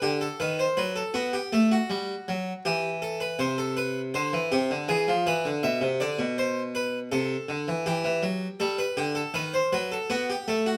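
A solo harpsichord, plucked and full-bodied in the Flemish style with two sets of strings, sits up front in this short baroque-style two-part invention, cut from a longer piece. The mood is solemn and serious, moving at 80 BPM in a straight 3/4, with the instrument tuned to A4 = 441 Hz. Its range runs from B2 up to E5, and the harmony passes through chords such as B/D#, Em, E, Am/C and B5, with a brief unharmonized stretch near 3.4 seconds. A moderate studio reverb gives the harpsichord a modest sense of room around its attack. The whole passage lasts about 10.8 seconds, closing on a B5 chord at 10.1 seconds.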